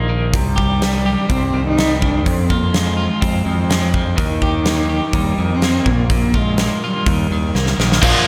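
This brooding, cathartic quiet-loud alternative rock excerpt opens with a dark, bowed cello singing an expressive melody with vibrato and portamento over a slightly broken-up, compressed electric guitar's tremolo-laced arpeggios and a growling, overdriven fingered bass, all touched by slapback echo on the cello and guitar; a huge, punchy arena drum kit with bright cymbals joins at 0.3 seconds and fills from 7.5 seconds before, at 8.0 seconds, three picked guitars crash in on a riff: a biting overdriven one, a double-tracked phaser-swept one, and a scooped high-gain one sitting in the background.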